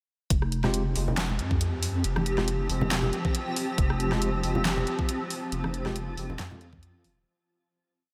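A brooding, heavy deep dubstep piece opens straight into its drop at 0.3 seconds, with a deep, dark wobble bass playing long gliding notes up front, a knocking overdriven electronic kick and a layered dubstep kit with a huge snare, hi-hats, rim clicks and handclaps in a half-time beat with a light swing. A cloudy, evolving granular pad arrives at 1.6 seconds with blurred sustained chords, while sparse echoing stabs from a clean tine electric piano and low-tuned, damped congas with echo sit in the background. The dreamy mix is soaked in a huge ambient reverb, and the piece fades out from 4.9 seconds.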